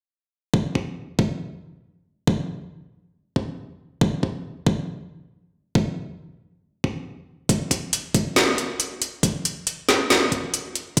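This deep dubstep excerpt has a brooding, heavy mood, moving at 138 BPM in a half-time 4/4 feel with a light swing on the 16ths. A layered electronic kick drum with a knocking tone and a high-pass filter sits up front from 0.5 seconds, joined at 7.5 seconds by a garage drum kit with a woody snare and metallic hi-hats. Both parts were re-recorded in a small room, and the whole sounds as if played on a big sound system in a bare space, bathed in a wet echo-chamber reverb.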